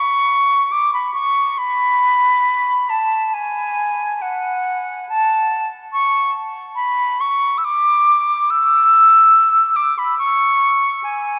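This is a classical piece for solo concert flute, cut from a longer work, with a mournful, yearning mood. The flute plays alone from 0.0 to 11.4 seconds in a free, rubato feel, staying in its upper register between F#5 and E6. Its tone is airy and straight, with a crisp attack and lifted highs that give each phrase a bright edge. The playing is expressive and sits up front in the mix. A cathedral reverb with a decay of about 5.9 seconds surrounds the instrument, so every note hangs in a vast, echoing space.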